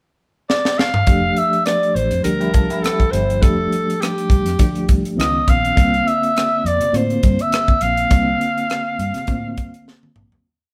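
This is a short, lush piece of 1970s-style soul with a smooth, romantic mood and a gentle swing. It opens with a pickup bar where a tight funk drum kit plays a fill under a growling alto saxophone. At 1.1 seconds the reed electric piano and a vintage muted, fingered electric bass join as the verse settles on a F69 chord. The drums sound dry and polished, with a high-tuned snare and a tight kick, and the bass line is round, dark and melodic. The saxophone sits up front with a breathy, raspy vibrato, playing a free solo melody, while the electric piano adds fast tremolo, drop-2 voicings and grace notes. A slightly broken-up electric guitar through a small old amp drops in briefly around 2.4 seconds with a short picked fill in thirds, and the band, heard live together in a stone room, fades out over a closing drum fill after passing through Db9 and C9sus4.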